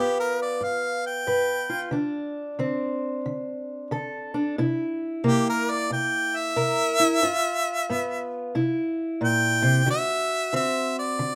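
A bright, close-miked harmonica with vibrato takes a jazz-tinged solo up front through this rollicking, soulful slice of acoustic country blues, carried on a swung 4/4 feel over a boxy parlour steel-string guitar fingerpicked through changes from G7 to C7 and D7, all in a light reverb for the full 11.3 seconds of this clip from a longer piece.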